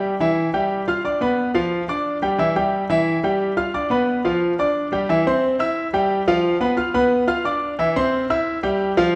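A clear, intimate grand piano plays alone in a joyful, danceable Latin style at a brisk 178 BPM in C major, its audible action noise heard up front. The opening passage moves between Em and G7 before the harmony shifts at 5.1 s to C, Bdim over F and back to C, spanning E3 to F6. A wet recital hall reverb gives the piano a resonant church or concert-hall setting in this short cut from a longer piece.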